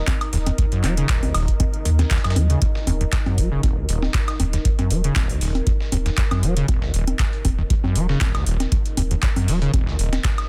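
Raw and hypnotic, this short excerpt of acid house moves at 118 BPM in 4/4 with a light 16th-note swing, set in Eb minor. At its center is a squelchy, resonant sawtooth acid bass riff, bright and up front, with filter sweeps, overdrive, analog chorus, tape echo and sidechain pumping. An overdriven electronic kick with a deep analog thump anchors the beat, joined by a booming analog drum machine whose congas, handclaps, metallic hi-hats and woodblock carry overdrive and the rough air of a small room. Underneath, a round sine sub bass holds the low end from 0.3 seconds with sidechain pumping, while a quieter, gritty sampler-style kit adds compressed hi-hats and a medium-tuned snare, both high-pass filtered, with pumping on the hats. A moody, full-bodied pad of detuned unison saws and a sub octave drifts in the background with chorus, its own reverb and sidechain pumping, all inside a dense, heavily limited mix that is otherwise quite dry.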